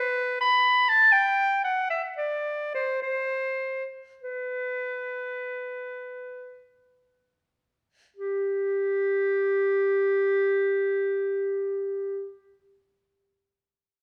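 A bright solo clarinet carries this baroque-style fantasia on its own, sounding in G major within a range from G4 to B5 and tuned to A4 = 444 Hz. Its notes begin with a soft attack, and the playing is classical in style, flowing and radiant in mood. The tempo moves freely between 42 and 64 BPM in a rubato 4/4, slowing down across the opening 8.2 seconds before a second section begins. The clarinet sits up front, and a wet recital hall reverb with a 1.5-second decay surrounds it, giving the impression of hearing it from further back in the room. The clarinet falls silent at 12.2 seconds, and the passage is cut from a longer piece.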